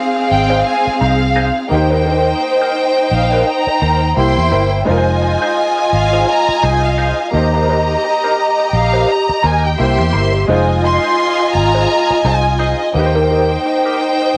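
A lush string section and a clear, worn grand piano open this bittersweet, smooth soul excerpt together, settling into an easy 85 BPM swing in F minor. The strings carry an up-front second line with even vibrato, while the piano sits in the background with short-sustain chords moving through Fm7, Cm7/Eb and C7. An electric guitar through a small old amp plays a dark, slightly broken-up riff colored by wah and tremolo. At 0.3 seconds a violin section enters with a focused melody tinged by cassette tape. Underneath, a vintage foam-muted fingered bass sounds round and punchy, well forward in the mix. Light reverb and the home cassette recording give the piece a homespun character.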